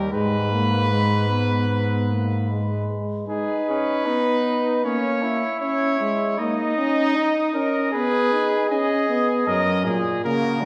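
A bright, punchy trumpet carries the melody in this short classical canzona for brass ensemble, cut from a longer piece and written in an imitative style. Beneath it, a second trumpet with a mellow tone and light vibrato weaves a second line, while a euphonium sits up front with a warm accompaniment. A brilliant bass trombone anchors the bass for the opening 2.9 seconds, drops out, and returns at 9.5 seconds for the close. The mood is contemplative yet driving, in a steady, straight 4/4 that moves through dark minor harmonies. The ensemble is heard from further back in a scoring stage, wrapped in a generous, wet reverb.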